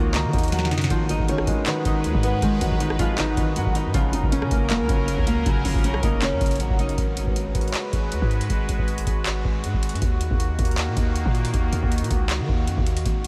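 Melancholic and brooding, this trap-leaning hip hop fragment moves at a heavy half-time pace and is drenched in a dreamy, reverb-soaked haze. A fingerpicked flamenco guitar carries the melody, its finger squeaks audible beneath lush chorus, delay and a low-pass filter, while a natural-sounding baby grand piano adds low accompaniment through the same dulled filtering; both drop away at 7.0 s. Beneath them, a bright, detuned sawtooth pad with a slow attack and a filter swell sustains chords across the whole span. A deep, boomy 808-style bass with a sine core and a noise layer decays under each note. The dry, tape-warm analog drum machine sits up front with a booming kick, tonal snare, metallic hi-hats, handclaps and rim clicks, squeezing in a short fill at 0.5 s, while the harmony circles through D#m, G#m7 and F#, leaving the second half to pad, bass and beats.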